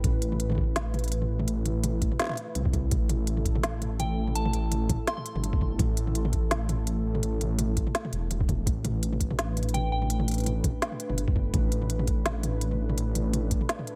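Light reverb and a digital ambience frame this tense, cinematic half-time drum and bass excerpt at 167 BPM, built on an A5 chord with a lightly swung sixteenth feel. An up-front detuned sawtooth bass rumbles deep and saturated beneath a gritty, pitched-down sampler kick with a tape-warm thump, while an electronic kit adds a woody snare, crisp hats and toms. A moody analog pad with chorus and sidechain pumping sustains dark chords, and a soft, warbling FM bell with chorus and tape echo appears briefly around 4.0 s and again near 9.7 s.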